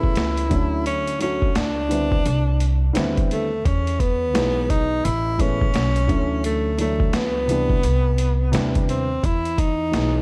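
From the first beat, a breathy tenor saxophone carries the melody over dark upright piano, upright bass and a boom bap drum kit in this cool, mellow jazz-hop excerpt at 86 BPM in 4/4, with a swung 16th-note feel. The saxophone sits up front and close-miked, playing in a jazz style with vibrato and a soft subtone, its line trailed by an analog delay. Beneath it, the intimate, vintage-toned piano moves smoothly through lush major-ninth chords from Amaj9 through Dmaj9, Cmaj9 and Emaj9, its action noise audible in the mix. The pizzicato upright bass gives a woody, thumping low end with steel-string bite. The sampler-style drums are gritty, compressed and pitched down, with a thumpy kick, a high-tuned snare and hi-hat, re-recorded in a large room and placed up front. Vinyl crackle and small-room ambience frame the whole piece, and all four parts play together until about 10 seconds, when this section of a longer piece ends.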